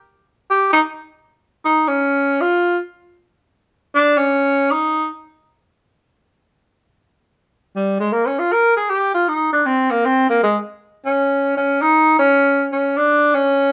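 A clear tenor saxophone plays alone in this swinging, playful jazz excerpt at 157 BPM in 3/4, its vibrato, soft attacks and scooped notes moving between G3 and Bb4. The horn sits up front yet sounds distant and roomy, playing from 0.5 to 5.1 seconds and again from 7.8 seconds to the end. A moderate studio reverb and a dark production frame the solo.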